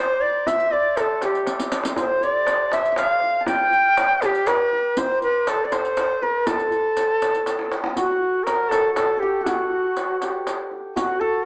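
A breathy, reedy ney carries the melody up front over a shimmering, hammered santur second line from the opening of this stately Persian modal ensemble fragment in straight 6/8, soon joined by a tight, distant tombak and a close, dry riq with dark jingles, with drum fills at 1.5 and 7.5 seconds and a new section arriving at 8.0 seconds, heard through a small-speaker sound in a reverberant studio.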